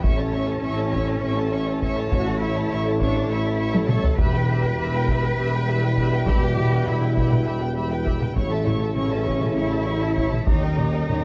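Heroic and epic, this cinematic orchestral excerpt in 7/8 rides a heavy-sticked taiko ensemble beneath lush, vibrato-rich violins carrying the melody and a second line, a smooth viola section in the background, distant dark French horns and trombones holding very quiet sustained chords, and a bass of expressive cellos, woody double basses and a soft-attacked tuba, with a drum fill at 3.7 seconds leading into round, soft-malleted timpani at 4.2 seconds and a huge, barely audible cymbal swell entering at 10.5 seconds to close the excerpt, all set in a moderate scoring-stage reverb.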